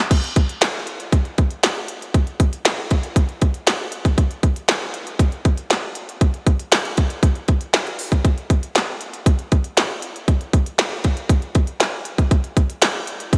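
A straight 4/4 funk groove at 118 BPM drives this short, slick and danceable cut from a longer piece. A minimal electronic drum kit carries the whole passage from 0.1 to 13.4 seconds, using a tight kick, a tiny snare, clicky hi-hats, handclaps and a crash cymbal. The kit sits up front in the mix; it is overdriven for a gritty edge and re-recorded in a small room. Around it, a moderate, lush hall reverb with a long tail lends depth. The bright, 1980s-style digital production keeps the sound crisp and polished, suited to the dance floor.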